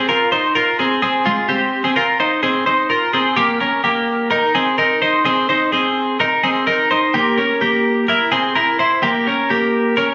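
Recorded on a phone in a room, with studio reverb, compression and rolled-off highs, this restless, wistful indie pop excerpt features a solo twelve-string electric guitar, bright, twangy, clean-toned, picked and up front in a moderate spring reverb, moving from F minor to C minor seventh at 3.4 seconds and on through A-flat add nine over C, C seven and a rootless E-flat seven.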